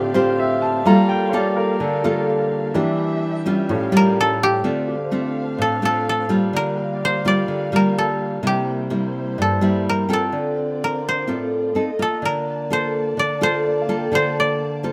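This intimate, wistful bossa nova fragment opens on a clear baby grand piano playing a solo passage, its action noise audible and its notes sustaining long, with a full-bodied, fingerpicked nylon-string guitar up front and a close, veiled, con sordino chamber violin section holding soft, vibrato-tinged chords. At 4.0 seconds a dry, woody koto played with fingerpicks enters up front with the melody, and from 4.6 seconds the music settles into D minor, moving at a straight 126 BPM in 4/4 throughout. A light reverb colours the recording.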